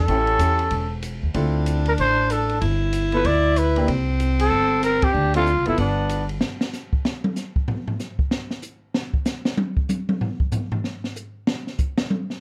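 A close, detailed and nearly dry recording catches a playful, swinging small-group jazz excerpt at 190 BPM, where a growling, raspy trumpet carries the melody with vibrato and scooped notes over a warm alto saxophone's second line, a woody pizzicato upright bass and a clear baby grand piano whose action noise is audible. The band hits an accent at 5.0 seconds over a progression moving through A7, Dm7, G6 and C5. From 6.4 seconds the dark, smooth drum kit, with its high-tuned snare, boomy kick and dark cymbals, plays a solo until 12.4 seconds.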